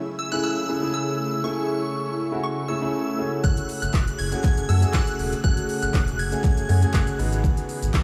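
An airy, detuned pad opens this confident yet bittersweet dance-pop excerpt at 120 BPM, soon joined by a shimmering FM bell melody with phaser and diffuse delay and an intimate concert grand piano with audible action noise, the piano pumping over Amaj7/C#, F#madd9 and G#m7 chords before a deep house kit with a woody snare and smooth hats arrives up front with a sine-and-triangle sub bass at 3.4 seconds, and a crisp, very quiet group handclap follows at 3.9 seconds, all in a dreamy, reverb-soaked mix.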